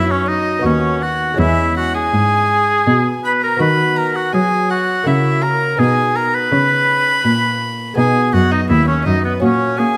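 Set in a moderate recital-hall reverb, this flowing, dance-like baroque-style sonata movement in B major moves at 82 BPM in 3/4, tuned to A4 = 439 Hz, with a close, airy, nasal gut-string violin carrying the melody above an up-front oboe second line sung with vibrato, while a delicate fingerpicked lute with double strings and a dark, bowed period cello supply the continuo accompaniment and bass, all four playing throughout this 10-second passage cut from a longer piece.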